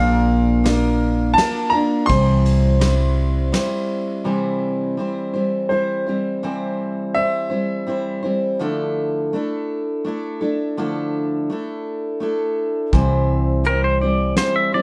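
Nostalgic and gentle, this acoustic folk fragment in 3/4 at 83 BPM sets a brilliant upright piano melody over an up-front picked steel-string acoustic guitar, with a growly pizzicato upright bass and a soft brush drum kit with dark cymbals heard at the opening and again from 12.9 s, before a clean, compressed pedal steel guitar with slide and volume swells takes a brief closing solo, all in moderate studio reverb.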